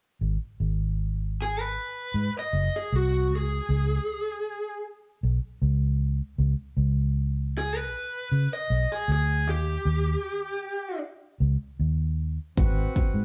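Captured by a band playing live in one room with light reverb and a muffled top that stops at 7.9 kHz, this gritty, soulful straight-eighth soul blues moves at 78 BPM in 4/4, cut from a longer piece. A round, punchy, foam-muted vintage electric bass sits up front from 0.2 s, and from 1.4 s to 11.0 s a dark, picked lead guitar pushed through a small cranked amp carries the overdriven melody over chords moving from Ab to Db5 and Eb. At 12.6 s, on an Ab7#9, a smooth-topped jazz-style horn section adds sustained chords while a glitchy electronic drum kit with a deep kick and clicky hats joins for the brief final moment.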